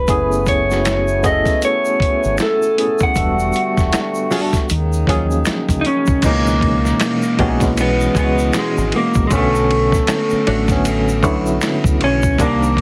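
A slightly broken-up, lo-fi electric guitar through a small old amp carries the melody from the start in this sultry, soulful neo-soul R&B excerpt, sitting up front over a worn, slightly out-of-tune electric piano with medium tremolo and a round, dark fingered dub bass. A gritty sampler-style drum kit with a thumpy kick, medium-tuned snare, hi-hat, ride, crash and finger snaps drives the gently swung sixteenth feel, joined by a soft tube shaker and group handclaps heard in a small room. A reedy, breathing harmonium holds airy, mellow chords beneath the band until 6.2 s, while a clean, picked hollow-body jazz guitar enters at 0.9 s to add a second line. The harmony drifts through lush minor eleventh chords before settling into minor ninths in the second half. Light reverb and a heavily compressed, radio-like finish give the whole track a dusty, vintage character.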